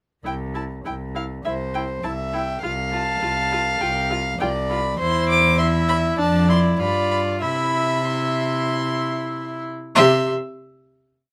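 A viola opens with repeated notes and chords in the tune's rhythm, joined at once by a first violin carrying the graceful, lively melody with light vibrato and a rich, up-front cello marking the bass on the beats, before a nasal, airy-bowed second violin enters close at 1.5 seconds with a counter-melody in this short, quick classical-period string quartet movement in C major at 93-102 BPM in 4/4, all four gut-string players sounding reedy and period-styled in light reverb as the harmony moves through a G7 back home and the quartet settles on a sustained final chord at 10.0 seconds.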